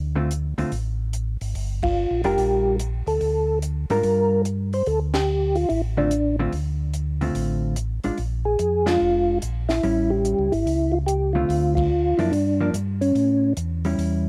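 A mellow tonewheel organ opens this late-night, smoky soul jazz organ trio excerpt with a round bass line through a slow rotary speaker, its key click audible, joined almost at once by a clean, picked hollow-body electric guitar in a compressed tone and a compact cocktail kit with a boomy kick, high-tuned snare and dark cymbals, swinging at 145 BPM in D minor. At 1.8 seconds a second, flute-like tonewheel organ takes the melody up front, soft with second-harmonic percussion, chorus vibrato and slow rotary, while the band punches accents together. The dry, close 1970s-style studio sound in a small room keeps the trio intimate as the harmony moves through Dm7, Gm7, Bb7 and A7.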